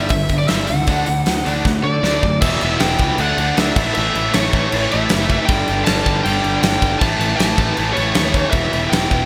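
A straight 4/4 beat at 157 BPM drives this aggressive hard rock passage, cut from a longer piece, with a big acoustic drum kit up front: a fat snare, a punchy kick, crash and hi-hat ring out in a stone-room sound wrapped in gated reverb. Two overdriven rhythm guitars, one a cranked stack, sit in the background playing a riff, while a punchy fuzz-laden picked bass holds down the low end. Over them, a warm lead guitar through a small cranked amp carries the melody in its upper register. After a drum fill from 1.7 to 2.4 seconds, the music moves into a new section where a very quiet, flute-like tonewheel organ enters with sustained chords, its slow rotary speaker, chorus vibrato and key click adding a soft shimmer beneath the guitars. The harmony moves through G5, D, Em and A, and the whole mix has a bright 1980s-style digital production with a lush hall reverb.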